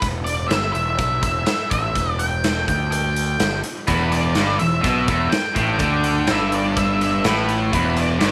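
A dark, octave-fuzz lead guitar carries the melody with slapback echo from the first second, over a punchy, fuzzed-out picked bass and a big acoustic rock kit whose hi-hat, punchy kick and medium-tuned snare sit up front in a bright stone room. At 3.9 s, two picked riff guitars join: a crunchy, overdriven one pushed forward and a tight, distorted one tucked behind it. The result is a driving, swaggering classic rock clip in straight 4/4, held on a single minor chord and lightly touched by small-room reverb.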